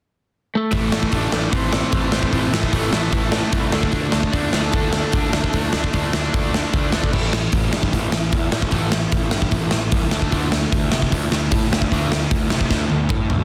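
Aggressive and urgent, this punk rock excerpt charges ahead at 150 BPM in a straight 4/4, rooted in A minor. A twangy, slightly broken-up lead guitar carries the melody with delay from 0.6 seconds until 6.7 seconds, riding over two picked rhythm guitars: one bright and distorted, the other overdriven and compressed, both sitting in the background. A growly fuzz bass with overdrive anchors the low end, while an up-front acoustic drum kit with a punchy kick, medium-tuned snare, hi-hat, crash and toms sounds mid-forward with a rolled-off top in a stone room. The second rhythm guitar drops out at 7.1 seconds as the harmony moves from Am and D5 to power chords on A5 and D5, leaving the distorted guitar, bass and drums to drive on. A drum fill at 12.7 seconds closes the passage, and the whole mix is dense and heavily limited with little reverb.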